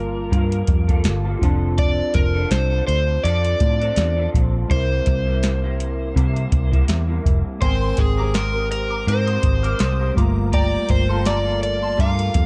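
Dark, warm production with a light wash of reverb frames this sunny, dreamy bedroom-pop excerpt in F major, moving at 82 BPM in 4/4 with a gentle swing on the sixteenths. A round, punchy, foam-muted electric bass sits up front, joined at 0.3 seconds by a soft analog rhythm box with a deep kick, tonal snare and metallic hi-hats. An overdriven slide guitar carries the melody with a fingered, warm tone, touched by subtle chorus and plate reverb. Beneath it, a slightly broken-up, lo-fi electric guitar through a small old amp wobbles with ensemble chorus and warbly pitch drift, while a clean tine electric piano glows in the background. At 7.6 seconds a shimmering FM bell with a detuned halo adds a bright second line, drenched in phaser, chorus and tape echo, before fading at 12.2 seconds over chords that drift from Gm9 through F6, C7 and Abmaj9 back to Gm9.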